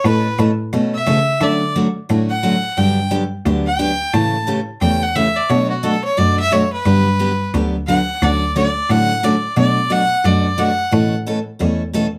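Playful and swinging, this short western swing excerpt features a clear, nasal fiddle out front carrying the melody with light vibrato until 11.1 seconds. A full-bodied, picked dreadnought acoustic guitar supplies the accompaniment, its finger squeaks audible, while a single bowed cello with a biting, earthy tone plays the bass line. Light reverb gives the trio a touch of space as the chords move through colorful sevenths and added ninths.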